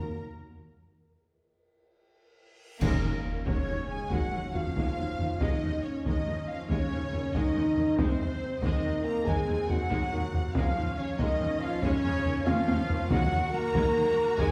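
Rolling in a compound 12/8 metre with a straight feel, this dramatic, dark cinematic cue is cut from a longer epic orchestral film score. It opens on a break where a cymbal swell, clash cymbals and concert bass drum sound close and dry with bright cymbals. A reverse cymbal and a huge impact then mark the arrival of the main section at 2.8 s, where heavy-stick solo taiko drums with a vintage, band-limited tone join alongside a distant, airy concert flute. Throughout, a lush violin section with vibrato carries the melody over a smooth-topped second violin line in the background, while an intense viola section fills the accompaniment. Soft-attack French horns hold mellow sustained chords beside a roomy, distant trombone section. The low end rests on a very quiet bass from cellos, double basses and tuba, and round soft-mallet timpani strike at 2.8 s and again at 13.1 s, with a wet scoring-stage reverb placing the orchestra further back in the room.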